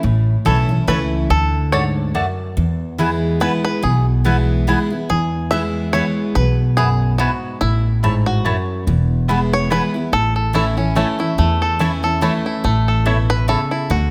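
A lively, joyful bluegrass tune in 3/4 at 143 BPM with swung eighths in A major, this cut from a longer piece moves through A, D and E. The fingerpicked five-string banjo takes the twangy, percussive melody from 0.5 seconds, set against the woody, thumpy pizzicato of the upright bass and a bright, full-bodied jumbo acoustic guitar whose picked accompaniment carries audible finger squeak. A round, double-strung mandolin adds picked stabs until 13.6 seconds, all captured by close, detailed microphones with light reverb.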